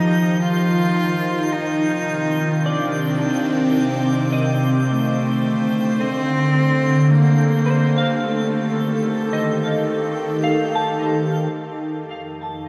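Drenched in a huge reverb that fills a vast, echoing space, this reflective, spacious ambient fragment drifts at 54 BPM in 3/4, moving from Ebadd9 through Cmadd9 and Gm9/D before turning to F9 near the close. An up-front, clear cello with light vibrato and an airy, earthy bow carries the melody until 10.4 s, while a bright, morphing, detuned wavetable pad with phaser sustains chords and a twinkling granular texture sparkles high above. From 2.7 s a clean, picked electric guitar adds chorused arpeggios wrapped in shimmer reverb and diffuse delay, and a deep, ominous drone rumbles in the background from 12.1 s.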